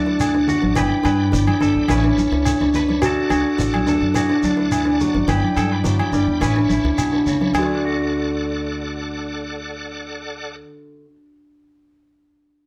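A straight 4/4 highlife guitar-band groove at 106 BPM in D major moves in a danceable, carefree mood, with ringing agogo bells, a grainy shekere and thick-skinned congas tucked into the background, until the percussion falls away near 7.8 seconds. Up front, a woody kalimba plucks soft arpeggios through tape echo, while a growly pizzicato upright bass anchors the low end and a clean, compressed semi-hollow electric guitar plays picked accompaniment. A shouting tonewheel organ holds sustained chords with key click, chorus vibrato and a slow rotary speaker over a D, G and Aadd9 cycle in light reverb, in this cut from a longer piece.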